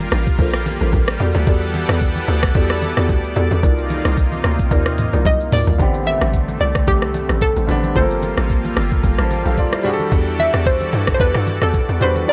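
A hollow, bouncy log drum bass and an up-front electronic drum kit with a knocking kick and metallic hats drive this deep, hypnotic amapiano excerpt. Beneath them sit a lush, warbling sawtooth pad with chorus and sidechain pumping, very quiet congas, and woody marimba stabs with tape echo until 5.6 s. A bright square-wave pluck melody with chorus enters at 5.3 s, and a clear, intimate grand piano joins at 5.8 s, all in a dry, gritty hardware recording.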